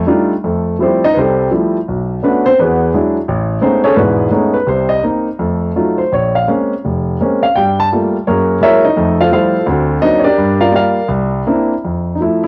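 Swinging and playful, this short solo jazz piece, cut from a longer performance, features an intimate, up-front grand piano with audible action noise, played with a swung, rubato feel through lush extended chords from Fmaj9 at 0.4 seconds to a closing Fmaj7 at 11.8 seconds, all captured in a home cassette recording with the light reverb of a small room.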